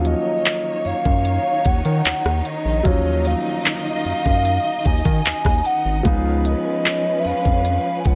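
A hollow, woody synth lead carries the melody from the first moment in this sensual, longing contemporary R&B excerpt at 75 BPM in Eb minor, its mellow tone colored by chorus, phaser and delay over an intimate grand piano with audible action noise and a lush, bowed string section holding sustained chords. A round, dark analog bass sits up front, and from 0.1 seconds a smooth electronic drum kit joins with a knocking kick, handclaps, hi-hat and rim click. The harmony rests on Ebm7 before shifting to Db7 at 6.0 seconds, all in a dry, close sound.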